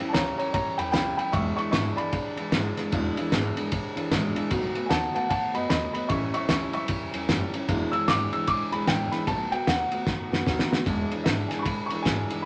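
Retro and rowdy, this rockabilly fragment swings, with an upright piano carrying the melody in a solo that runs until 10.9 seconds, its woody tone and audible action noise close and intimate. Beneath it, a picked, full-bodied steel-string acoustic guitar sits up front on accompaniment, and a pizzicato upright bass with gut strings thumps out a dark low end. A cloth-damped, muffled drum kit with a fat snare, tight kick and dark ride cymbal adds gritty, saturated punch, and it plays a fill from 10.1 seconds.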